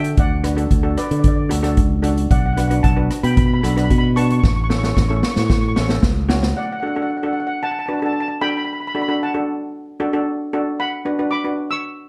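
A dark, warm small-room mix opens this sunny, bouncy calypso excerpt in D major at 113 BPM, cycling through D, Bm and A in a straight 4/4. A shimmering lead steel pan played with medium rubber sticks carries the melody, while an up-front double-seconds pan, struck with hard rubber sticks for a bright, metallic edge, supplies the accompaniment. A growly fingered electric bass and a boomy, airy street-band kit with hi-hat, rim click and a medium-tuned snare drive the groove, and the drums play a fill from 4.4 seconds before both bass and kit drop out at 6.5 seconds. The two pans then carry the repeated section, the accompaniment ending at 11.8 seconds and the melody at 12.1 seconds.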